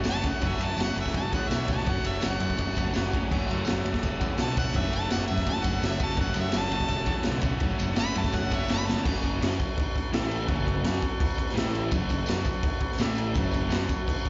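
This raw garage rock excerpt sounds like a live gig heard through the venue's PA, with small-room ambience, a recital-hall reverb and a top end capped at 7.6 kHz. The mood is menacing, with a straight feel. A bright, punchy harmonica carries an overdriven solo with light vibrato over the opening. An overdriven semi-hollow guitar, double-tracked and touched with slapback echo, plays the riff beside a growling, picked electric bass with its own overdrive. The saturated drum kit sits up front with a boomy kick, medium-tuned snare, dark cymbals and a pumping room sound, and a buzzy vintage combo organ holds sustained chords with vibrato. A jingly, very quiet tambourine drops out with the harmonica around 9.0 seconds, just after a drum fill at 8.9, then returns at 11.9 seconds as the band moves between F#m and A5.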